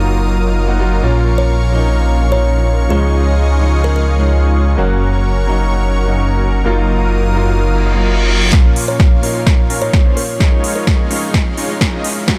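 A straight 4/4 pulse at 128 BPM drives this anthemic, euphoric festival progressive house passage in Bb minor, cut from a longer piece, with the piano, pad, supersaw and bass all pumping to the sidechain. A clear grand piano, its action noise audible, lays down the accompaniment beside a huge, bright supersaw riff that passes through a low-pass filter and tape echo, while a lush, chorused unison pad holds sustained chords above. A thick detuned saw bass sits up front through the opening, and a woody, ringing kalimba enters in the background at 1.4 seconds with a short tape-echoed melody that returns later. At 7.8 seconds a reverse cymbal and riser begin the lift, and at 8.5 seconds the bass drops out as a punchy electronic kick and a big-room kit with crisp hats and snare arrive for a build-up with a drum fill and a filter sweep on the supersaw. The chords move through Ebmadd9/Gb, Bbm, Dbadd9 and Gb, and the mix stays dry with a high-pass filter over the whole.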